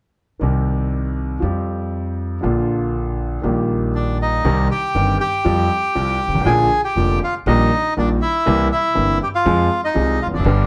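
A clear concert grand piano with deep bass and a dark, woody pizzicato upright bass open this passionate, dramatic C minor tango excerpt at a rubato 120 BPM, moving through Cm, Fsus2, Bb and Eb/Bb in a lightly reverberant room. A reedy, airy bandoneon carries the melody up front with plate reverb from 3.9 seconds, as the harmony turns from C7 to Fm near the end.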